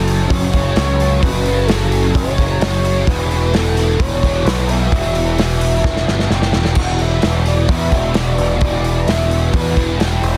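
A straight 4/4 pulse at 130 BPM drives this brooding, melancholic shoegaze and dream pop clip, with a loose acoustic indie kit of tight kick, medium-tuned snare, hi-hat and crash, rolled off on top, sitting up front and rolling through a fill from 5.8 to 6.8 seconds. A bright, double-tracked fuzz guitar riff in the low register and a growling, overdriven picked bass share the foreground, while a round, horn-like vintage sawtooth synth lead carries the melody with soft, sustained, warbling notes, vibrato, a filter sweep, chorus and tape echo. The music moves from E dorian to E minor at 6.8 seconds, all in a small room and a dense, heavily limited modern master.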